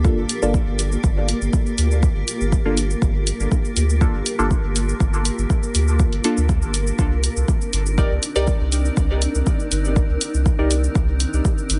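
A straight 4/4 dub techno pulse at 121 BPM in G minor drives this hypnotic, cavernous excerpt, anchored by an up-front, tape-tinged electronic kick and a round, soft sub bass that pumps against it, while electronic cabasa and hi-hat add a layered, small-room texture. Deep, mellow chord stabs with chorus, phaser, a filter sweep and dub echo decay over a blurred, detuned granular cloud pad carrying its own reverb and vintage 12-bit sampler grit, both breathing with sidechain pumping. The harmony moves from Gm9 to Cm9 at 7.0 seconds, the stabs dropping out at 10.7 seconds, in a dry, dark mix capped at 10.6 kHz.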